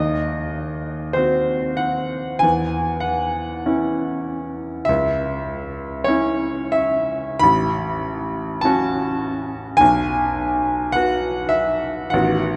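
A clear, natural-sounding baby grand piano plays alone and up front from A1 to B5 in this tender, nostalgic fragment of a romantic classical nocturne, moving with slow rubato through minor-key harmonies that settle on a bare B5 chord at 9.8 seconds, all bathed in a wet, lingering cathedral reverb of a church or concert hall before it breaks off at 12.6 seconds, mid-piece.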